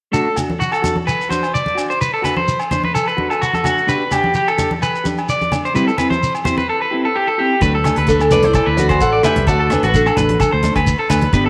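A slightly broken-up, twangy electric guitar spins arpeggios through tape echo over a dark, clean second electric guitar, with grainy shekere, ringing agogo bells and hard-handed congas, in this sunny, joyful highlife guitar band excerpt at 128 BPM in D mixolydian, moving from D to G to C. At 7.6 seconds a round, punchy fingered bass and a cloth-damped, thuddy drum kit with tight kick, hi-hat and rim click join, and at 8.1 seconds a picked steel-string acoustic guitar steps up front with a melody, finger squeak audible. Wet echo-chamber reverb and small-room ambience give the sound a joyful glow.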